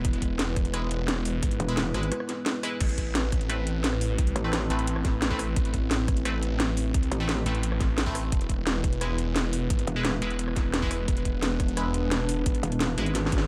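Aggressive and tense, this dark technical drum and bass cut pairs a snarling, detuned saw bass and a tight electronic kick with a cracking snare, metallic hats, rim clicks and crashes, while a moody analog pad pumps under sidechain, a nasal band-passed chord stab with phaser and delay enters at 0.7 seconds, and a metallic FM wobble bass surfaces in short bursts from 1.6 seconds, before a brief break and a closing drum fill at 13.2 seconds.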